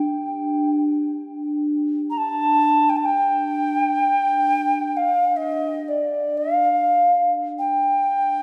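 World meditative music in free time, tuned to A4 = 444 Hz, this haunting excerpt pairs a breathy alto ocarina, clay-toned with vibrato, tongued chiff and an unsteady, distant quality, against a bronze singing bowl, played with a felt mallet, whose metallic ring carries a slow beating and a mellow, vintage, band-limited softness. The ocarina sings the melody up front from the first moment while the bowl supplies a hushed texture alongside it, falling silent at 7.4 seconds so the ocarina carries on alone until 8.4 seconds. A wet scoring-stage reverb with a small-room ambience surrounds the pair, lending a spacious, contemplative air.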